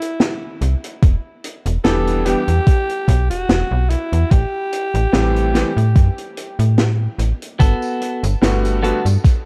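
Dark, cassette-tape production in a small room gives this melancholic, woozy vaporwave fragment a dusty, hazy glow, with a gentle swing in its lazy groove. A raspy, gritty alto saxophone carries the melody from the start through 6.8 seconds, close-miked and edgy with tape echo trailing behind it. Underneath, a vintage acoustic drum kit with a high-tuned snare, hi-hat and tambourine sits soft and rolled-off, while an overdriven, thumpy electronic kick and a snappy, metallic FM bass push up front. A clear electric grand piano with clangy low notes enters at 1.8 seconds, bathed in lush chorus and tape echo as the harmony drifts from Em7 to Am7. At 7.6 seconds, as the chords settle on Gmaj9, a clean, compressed electric guitar picks a short riff with subtle chorus and echo before the cut.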